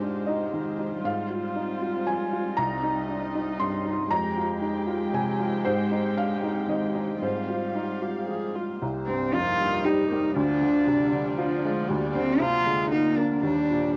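A bowed cello sits up front in this longing, reflective fragment of neoclassical music for piano and strings, carrying the second line with light vibrato, a soft attack and a sul tasto tone. Also up front, a felt-muted upright piano gives mellow accompaniment, its thin felt lending the notes a muted, intimate quality. A dark solo viola adds an airy bowed layer, while a chamber string section holds sustained chords in a warm haze. The music moves with a flexible, rubato three-beat feel, its harmonies drifting through major-seventh and minor colours before turning to a diminished chord at 10.4 seconds. Cassette-tape grain and moderate reverb give this home recording a close, lived-in sound.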